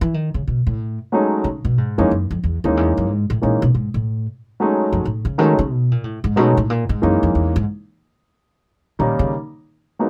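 A brisk swung 4/4 gives this sophisticated jazz fragment, cut from a longer piece, its lively swinging feel. A pizzicato upright bass with woody, thumpy gut strings opens alone and stays up front, and a grand piano with a natural, short-sustained tone joins at 1.1 seconds to carry the melody over B13, F#13 and D#7 harmony. The bass drops out at 9.3 seconds, leaving the piano to close, all captured dry in a rough home demo mix.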